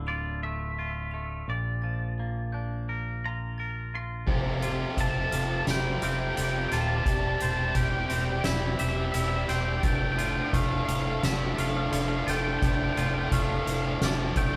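Cinematic and cathartic, this post-rock piece opens with a twangy clean guitar melody over a second picked, compressed guitar's arpeggios, a very quiet bell-like glockenspiel struck with soft plastic mallets, and a growling, distorted fingered bass up front, then at 4.3 seconds a build-up begins as veiled, muted strings, a bright overdriven guitar riff and a drum kit played with soft mallets, with dark cymbals, a fat snare and a boomy kick, join the band playing live in a small room.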